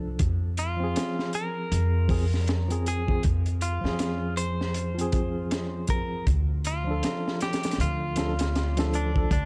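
Brooding and cinematic, this short trip hop excerpt at 79 BPM in F dorian sways with a 16th-note swing as a woody, thumpy pizzicato upright bass and a worn, slightly out-of-tune tine electric piano with tremolo and tape echo open at 0.0 seconds, a gritty, saturated breakbeat kit with a punchy kick and high-tuned snare arrives at 0.2 seconds, and a bright, twangy clean electric guitar carries the melody through tape echo from 0.6 seconds, all in a dark, small-room production that moves from Fm to Dm.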